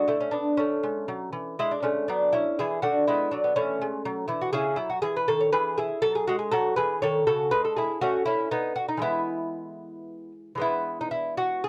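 Serene and dance-like, this short cut from a longer baroque-style piece for solo lute moves in a rubato 3/4 at around 112-125 BPM, its mellow, delicate fingerpicked nylon double strings, some doubled at the octave, sitting up front in light reverb as the music settles into E major from 4.5 seconds and shifts to a new section at 10.6 seconds.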